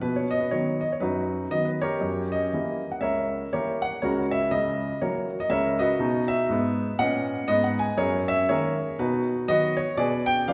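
A solo grand piano sits up front in a reverberant hall, its warm tone trailing a 1.7-second decay. This short fragment of swinging, playful stride jazz moves at 121 BPM in B major with a lilting swing on the eighth notes, spanning from C#2 up to G#5. The harmony passes from B through F#7b9 and F#69 before settling on B and turning to a Bdim7 at 10.0 seconds.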